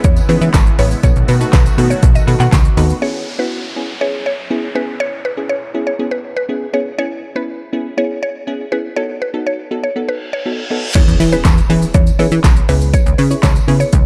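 A dark, lightly reverberant mix carries this carefree, summery dance-pop excerpt, where a woody, round mallet-like synth pluck with chorus and dub echo sings the melody over a crisp, warbling wavetable chord stab that pumps to the sidechain throughout. At the start a warm analog pad with chorus and tremolo holds sustained chords, while a funky, up-front plucky analog bass and an overdriven deep house drum kit, with punchy kick, fat snare, metallic hats, handclaps, shaker and crash, drive the groove alongside a very quiet, jingly tambourine. At 3.0 seconds the bass, drums, tambourine and pad fall away, leaving the melody and stabs with a downlifter; a reverse cymbal from 10.2 seconds leads into an impact at 11.0 seconds, where the bass, drums and tambourine return for the drop.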